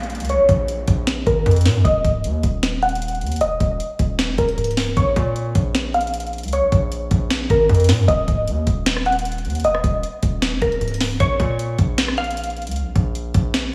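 Dark and melancholic, this half-time trap excerpt sets a glassy, detuned wavetable pluck melody, swept by a filter and colored with chorus and analog delay, over a punchy, heavy 808-style bass and an up-front electronic kit of knocking kick, sharp snare, rim click and bright hi-hats, while a background downlifter falls away by 1.9 seconds and a lush hall reverb soaks the mix in a dreamy haze.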